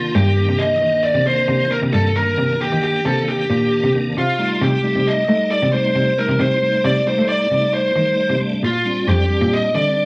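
A dark, distorted high-gain lead guitar carries the melody up front from the start, over a piping, lightly overdriven tonewheel organ with key click, chorus vibrato and a fast rotary speaker, both colored by cassette tape. A bowed cello, played by one player with focused, boxy tone and vibrato, holds the bass line until 9.9 seconds. This tense, intricate progressive instrumental excerpt moves in 5/4 at 134 BPM in C dorian, through Cm7, a rootless F7/C and Bb6, with a light, small-room ambience that has the feel of a home cassette recording.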